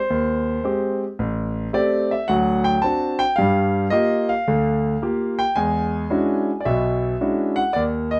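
Sophisticated and playful, this short solo jazz fragment swings at 110 BPM in 4/4, cut from a longer piece. A single concert grand piano carries everything from 0.0 to 8.2 seconds, sitting up front with a clear, natural tone, deep bass and long sustain across a range from A1 to A5. The harmony moves through Abmaj7, Am7, D7 and Gm7 before arriving at E13 near the end. Light reverb surrounds the instrument, while the rough home-demo mix rolls off the top end, lending the sound a slightly dulled character.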